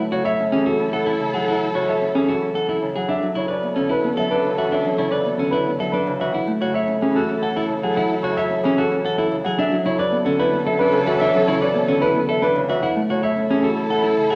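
A dark baby grand piano carries the melody from the first moment, its smooth, vintage tone and long sustain setting a hypnotic, meditative mood in this 14.4-second cut from a longer minimalist pattern piece in B minor. It moves at 111 BPM in a straight 3/4, tuned slightly low to A4 = 436 Hz. A clean, picked electric guitar plays arpeggios up front, and a fingerpicked Celtic harp rings out a warm accompaniment in the low register. Further back, a mellow French horn holds a distant second line on a single A4, while a woody, lush string section sustains bowed chords with vibrato. The harmony rocks between F#m7 and Bm9 every few seconds, and the whole piece sits in a wet recital hall reverb with the warbling pitch drift of worn cassette tape.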